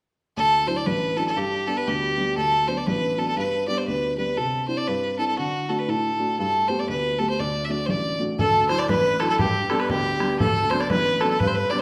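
A clear, up-front fiddle with light vibrato carries the melody of this rollicking, lively Celtic polka at 120 BPM in D mixolydian, over a dark, woody, slightly detuned upright piano, and at 8.4 s an airy concert flute and a breathy, nasal melodica join in the background along with a damped, distant bodhran, the whole set in a wet recital-hall reverb.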